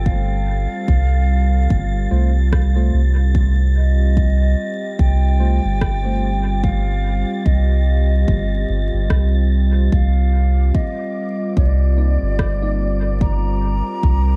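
Hazy with vinyl crackle and heavy echo, this spacious ambient dub excerpt sets a hollow, airy wooden flute with vibrato and dub echo over a smooth, detuned analog pad with chorus, moving from F to C7sus2 at 9.9 s, alongside a round sub bass up front, a breathy wind-like noise layer floating high above, and a deep overdriven kick with large-room reverb in the background, while a clean tine electric piano adds gritty sampler-tinged stabs with dub echo from 2.1 s and a distant rim click enters at 2.5 s.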